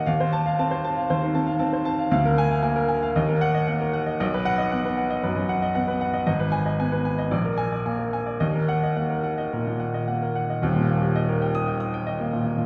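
A clear, open baby grand piano plays alone from the start in this passionate, stormy classical virtuoso study, its long sustain ringing across a span from the deep bass to the high treble under a flexible rubato. The piano sits up front yet is heard from further back in a recital hall whose lush reverb surrounds every phrase, as dark minor harmonies give way to a brighter major chord when a new section arrives at 10.6 seconds. The passage is cut from a longer piece and ends at 12.7 seconds.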